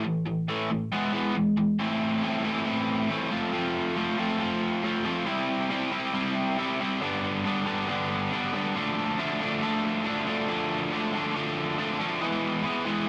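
A crunchy, bright overdriven electric guitar, picked and double-tracked up front in a small room, plays alone through this cool, moody rock passage at 138 BPM in A minor, opening on A5 and E before moving at 1.8 seconds through Am, F, C, G and Dm and arriving on E at 12.2 seconds.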